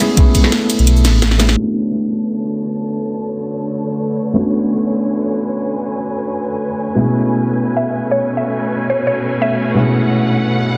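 A muted, felt-damped upright piano with audible action noise carries this rolling, dreamy liquid drum and bass excerpt in B dorian at 172 BPM. It opens on a brief drop where a layered electronic kit with a cracking snare and metallic hats plays until 1.6 seconds, joined at 0.8 seconds by a deep sine sub bass. After that, lush, vibrato-rich symphonic strings sustain chords under a filter sweep, and a woody, round mallet-like FM pluck adds a short melody with chorus and tape echo from 7.8 to 9.8 seconds, all in a moderate recital hall and a dense, heavily limited master.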